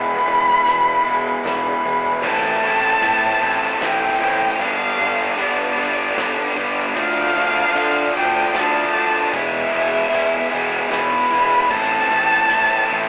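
A straight three-beat lilt drives this brooding, cinematic post-rock passage, cut from a longer piece. A distant, woody violin carries the melody with bowed vibrato in a dark upper register, while a bright, compressed fuzz guitar picks a riff up front and an overdriven fingered bass adds a fuzzy, amped low end. A very quiet, roomy drum kit with dark cymbals, a medium-tuned snare and a tight kick enters at 0.7 seconds, and a second picked guitar, tight and distorted, joins the riff at 2.2 seconds. The harmony moves from E through Am7, G5 and Dm before returning to E and settling on Am. The whole band sounds as if it were playing live in one room, soaked in wet reverb and filtered through a thin, telephone-like tone that gives the recording a haunted, faraway character.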